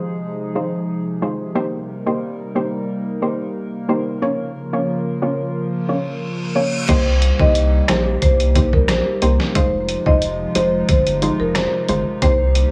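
A dark, smooth marimba struck with medium mallets carries the melody from 6.9 seconds, its notes trailing a tape echo through this bouncy, tough dancehall excerpt in a straight 4/4. From the start, a soft, round pluck with a chorused, filtered edge plays the accompaniment up front while a hollow, flute-like pad holds sustained chords that pump against a sidechain, moving through Fm7, Cm7 and Bbm. An electronic reverse cymbal rises out of the opening at 6.0 seconds and leads into the fuller second part. There a trip hop sampler-style drum kit joins, compressed, pitched down and muffled, with a thumpy kick, medium-tuned snare, rim clicks, hi-hat and crash placed up front. A deep sine sub bass with a fast attack and long sustain fills the bottom, and the whole piece sits in light reverb and digital ambience.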